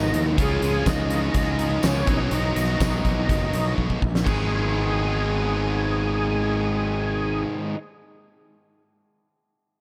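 A double-tracked, bright distorted guitar riff opens this brooding, gritty classic rock excerpt. It arrives alongside a thick, overdriven tonewheel organ melody shaded by chorus vibrato and a slow rotary speaker, and a growly fuzz fingered bass sitting up front. A huge arena drum kit with a fat snare, punchy kick, crash, hi-hat and tambourine pumps in a hall-like space and plays a fill from 3.8 to 4.3 seconds as the chords move from C#add9 and B to G#m, then stops at 4.4 seconds, after which guitar, organ and bass carry on in a small room ambience.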